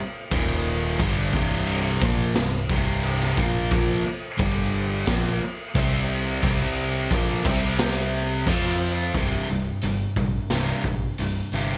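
Anthemic and energetic, this short hard rock cut at 88 BPM in 4/4 puts two distorted guitars on the riff from 0.3 seconds, one sludgy and warm with overdrive, the other tight, bright and up front, over a dark, round overdriven picked bass. A raw garage drum kit sits forward too, with a boomy kick, medium-tuned snare, hi-hat and crash cymbal, its saturated, gritty small-room sound rolled off on top and carried by gated reverb. Power chords move through Eb5, C5, Bb5, G5 and F5 before a closing section from 9.1 seconds settles on C5, all framed by light reverb and bright 1980s-style digital production.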